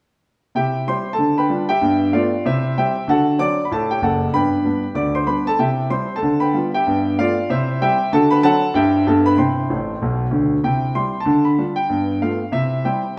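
Stride jazz on a clear, open concert grand piano playing solo in a swinging, exuberant 4/4 with a deep bass and an up-front presence, set in a wet stone room and cut from a longer piece, with the chords moving among C, G7 and D7 and a short piano fill at 9.7 seconds leading into a repeat of the opening section.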